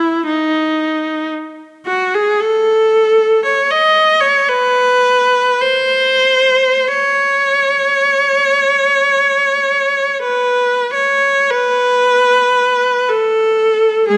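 In a free, rubato 3/4 that drifts between 36 and 60 BPM, this short classical passage for unaccompanied viola sits in C# minor, carrying a lonely, yearning mood. The single bowed viola plays alone from start to finish, ranging from G#3 to D#5 with a clear, smooth, even tone and vibrato, heard close and up front. A moderate recital hall reverb surrounds the sound within a dark, warm production, and the music shifts into a new section at 10.9 seconds before the excerpt closes at 14.2 seconds.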